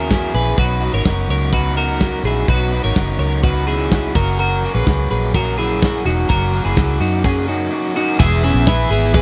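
A bright, twangy twelve-string electric guitar rings out up front with clean, compressed, picked arpeggios in this breezy, youthful jangly indie pop excerpt, backed by a biting overdriven guitar's picked accompaniment, a dark, round, foam-muted fingered bass and a punchy acoustic drum kit with a medium-tuned snare that enters at 0.1 seconds, set in a dry, close 1970s-style studio sound as the chords move from C#m through Badd9 and F# to E at 8.2 seconds.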